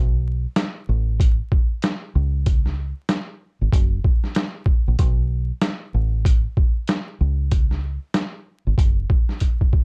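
A round, foam-muted fingered electric bass opens this reflective, moody boom-bap hip-hop cut, sitting low and up front at 95 BPM in 4/4 with a 62% swing on the 16ths. At 0.6 seconds a gritty, pitched-down sampler-style kit enters with a thumpy kick, a medium-tuned snare and hi-hat, sounding compressed and tape-warm as if re-recorded in a small room. The bass drops out at 9.0 seconds before a brief drum fill closes the fragment, all within a dark, dry production dusted with vinyl crackle.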